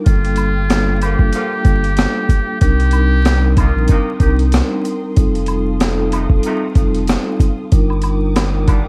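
A tough, moody boom-bap hip-hop excerpt in G minor at 94 BPM with a swung feel opens on an intimate bed of sul tasto studio strings in the background. It is quickly joined by a gritty, pitched-down sampler drum kit with a thumpy kick and high-tuned snare, a round sine sub bass, and a mellow, close-miked vibraphone played with soft mallets over Gm7, Cm7, F7 and Ebmaj7. A buzzy, metal-muted trumpet carries a jazz-style melody until 4.4 s, while an egg shaker and woodblock sit low in the mix, a tight, vintage horn section adds stabs with octave doubling from 1.0 s, and the dark production is wrapped in light reverb and vinyl crackle.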